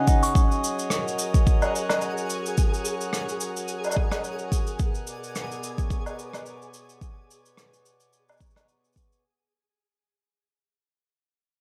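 A deep, tape-warm electronic kick sits up front in this delicate, playful folktronica excerpt at 108 BPM in F# major, the swung 16th feel joined by a natural, small-room brush kit of cabasa, hi-hat, rim click and woodblock. A reedy, breathing pedal harmonium with vintage 12-bit sampler grit holds sustained chords that move from F# to Bmadd9 at 4.8 seconds, while a fingerpicked archtop guitar with fresh strings, finger squeak and delay offers its arpeggios only until 0.9 seconds. From 1.1 seconds a twinkling, sparkling granular texture with an octave-up shimmer and its own reverb drifts in above, all under light small-room ambience as the passage fades out.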